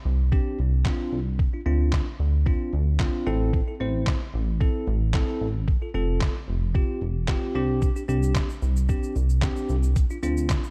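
A dark, dry production frames this euphoric, upbeat dance-pop excerpt, where a glossy, chorused synth bass pumps under a sidechain alongside a bell-like tine electric piano, while an overdriven, detuned 8-bit drum machine punches out a thumpy kick, fat snare, handclaps, hi-hat and shaker over chords moving from Csus2 through Dm7, Am and F.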